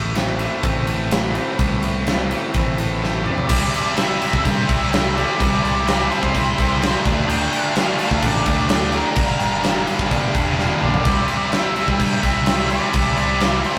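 An excerpt of brooding, dark quiet-loud alternative rock opens with a dark, lo-fi electric guitar through a small old amp fingering arpeggios over two bright, tight distorted guitar riffs, growly picked bass and a punchy, up-front rock kit with bright cymbals, moving from Am through a drum fill at 3.0 seconds. At 3.5 seconds the arpeggios stop and a double-tracked, high-gain guitar riff joins in the background, while an octave-fuzz lead guitar carries the melody, having come in at 3.2 seconds, as the chords shift through Cadd9, Dm and Gm. The whole band sits in a rough rehearsal-room recording with tube saturation and moderate stone-room reverb, and a second drum fill arrives at 10.6 seconds.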